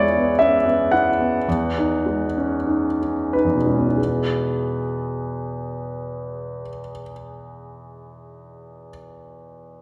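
A clear grand piano carries this short, dreamy excerpt of impressionist classical music alone, its intimate, natural tone sitting up front with long sustain and the audible noise of its action. The feel is rubato in 4/4, and the opening passage slows down through its first 4.0 seconds. The piano ranges from E2 up to F#5, moving from a sixth chord on E to a C# minor chord with an added ninth over E at 1.5 seconds, then settling back on E at 4.0 seconds as a new section begins. A wet recital hall reverb places the listener further back in the room, lending the luminous harmonies a soft glow. The recording is cut from a longer piece and ends at 9.8 seconds.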